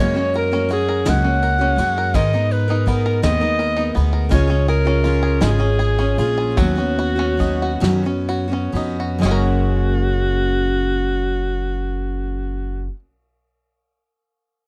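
Acoustic folk in 6/8 at a slow 40-55 BPM, this warm, peaceful clip in F# major comes from a longer piece. An up-front alto saxophone carries the melody with vibrato and a smooth, classical-style top, while a picked steel-string dreadnought guitar accompanies with audible finger squeak. A twangy, fingerpicked banjo adds percussive arpeggios, and a woody pizzicato upright bass sits up front underneath. A soft brush kit with bright cymbals, a medium-tuned snare and a punchy kick sounds distant and roomy, playing from 0.3 to 9.5 seconds. The chords move through F#add9, G#madd9, C# and Badd9/D#, with the tempo slowing between 4.3 and 9.2 seconds before a new section returns to F#add9, all in a dry sound with little reverb.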